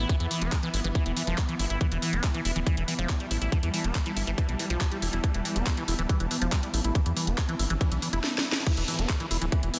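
An alien, psychedelic trance excerpt in E minor at 140 BPM opens on a swarming, detuned drone and an ethereal, airy pad pumping in the background, while a squelchy, resonant acid bass riff runs through phaser and tape echo over a round, dark analog bass. An overdriven, up-front electronic kick and garage kit with a cracking snare, handclaps, hi-hat and crash drive everything through a drum fill at 8.2 seconds, as a riser and downlifter in the background lead into the drop at 8.7 seconds.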